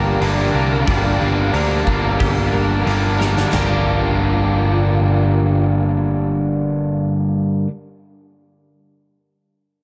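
A light small-room reverb frames this brooding, melancholic shoegaze and dream pop cut from a longer rock piece, where a biting overdriven guitar riff sits up front, a crunchy overdriven guitar with reverse reverb churns in the background, and a growly overdriven picked bass anchors the low end throughout. A deep, detuned sawtooth analog pad with chorus holds dark sustained chords until 7.0 s, while a twangy, very quiet twelve-string electric guitar picks bright arpeggios that stop at 4.4 s. A big, punchy acoustic drum kit with bright cymbals and a china drives the opening section, closing with a drum fill into the second section at 3.5 s before dropping out.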